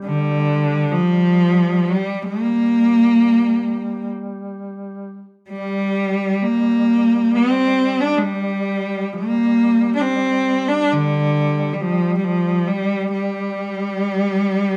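A moderate, large studio reverb surrounds this short mournful passage, captured as a live performance in one room and cut from a longer piece. It is a Caucasian folk lament in 3/4, played with a free, rubato feel and tuned to A4 = 443 Hz. A single bowed cello carries the melody up front from 0.1 seconds, ranging from D3 to D4 with a rich, focused tone, a smooth top and vibrato. Beneath it, a mellow duduk sits in the background, holding a G3 drone from the start in a folk style with its own vibrato. The whole passage stays in one solemn section through to 14.8 seconds.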